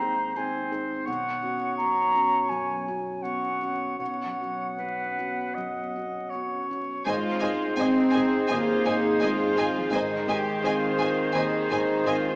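Rubato pacing around 76-86 BPM in 4/4 gives this cinematic, emotional film score cue a tender, hopeful pulse that breathes rather than marches. It opens with a felt-muted upright piano, soft and intimate with audible action noise, carrying the accompaniment beneath a ringing, thumb-plucked concert harp in the background, while a clear oboe, a mellow clarinet and a silver concert flute with a crisp attack and straight tone weave second lines over an Ab to Bsus2 movement. The flute drops out at 6.7 seconds, and at 7.1 seconds the harmony returns to Ab as the string and brass sections arrive. A rich violin section holds the melody on a single high Ab with light vibrato, joined by a floating violin second line, a woody viola section, and a cello section that stands out as the most prominent part on the bass. A dark French horn section sustains soft-attacked chords and a double bass section anchors a low Ab, both sitting in the background. 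Wet scoring stage reverb surrounds the ensemble, and a layer of vinyl crackle and small speaker sound gives the whole cut a nostalgic, worn patina.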